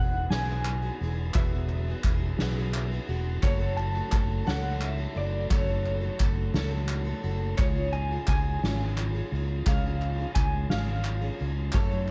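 A dark, slightly broken-up electric guitar through a small old amp carries the melody with tremolo, its compressed, lo-fi tone sitting high over this uplifting, nostalgic indie folk fragment cut from a longer piece. The pulse moves at a slow 58 BPM in 6/8 with a straight feel, and the arrangement builds over the chords Eadd9, F#m from 3.4 s and C# from 7.6 s. Up front, a fretless electric bass adds a warm, amped low end, while a soft-mallet drum kit with a boomy kick, medium-tuned snare and dark ride cymbal enters at 0.3 s, followed by crisp, band-limited group handclaps at 0.6 s. A picked, plugged-in twelve-string acoustic guitar gives shimmering, octave-doubled picked notes with a boxy parlour body, and a clear grand piano stays in the background, stepping forward with a brief fill at 2.4 s. A bright, fingerpicked steel-string acoustic guitar is barely audible in the opening moment, with a hint of finger squeak. 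The production is dark and dry, with little reverb, giving the whole a close, intimate glow.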